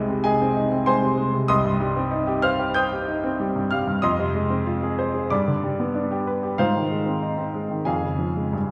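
Agitated and passionate, this short cut from a longer classical piece is a virtuoso piano study in a flexible rubato feel, the solo grand piano ranging from deep bass to high treble through a dark, restless chord progression. The piano sounds clear, present and up front, yet it is heard from further back in a recital hall whose wet reverb lingers around every phrase.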